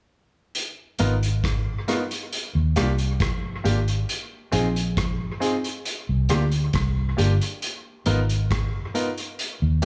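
Lovers rock reggae at a slow 68 BPM in 4/4, this short, romantic and tender cut opens with a vintage drum kit at 0.5 seconds, its hi-hat, punchy kick and rim click sitting up front in a pumping small room with a rolled-off top and dub echo. At 1.0 seconds a foam-muted fingered electric bass joins, dark, round and amped, the loudest part in the mix, alongside an intimate grand piano with audible action noise and short sustain. The chords move from Abm6 through Ebmaj7, Bb9sus4 and Gmadd11 before returning to Abm6, all within a snug studio ambience.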